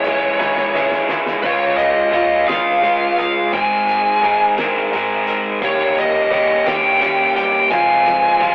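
Wistful yet carefree, this indie rock passage in a straight 6/8 puts a bright, overdriven lead guitar melody up front over a picked, compressed overdriven guitar riff, with a clean twelve-string electric riff tucked behind. A distant bowed cello carries the bass with expressive vibrato and portamento, while a loose acoustic drum kit with dark cymbals, a fat snare and a punchy kick sits in the background and plays a fill from 0.4 to 1.4 seconds. The rough rehearsal-room recording adds small-room reverb, saturated warmth and a telephone-like tone, and the clip is cut from a longer piece.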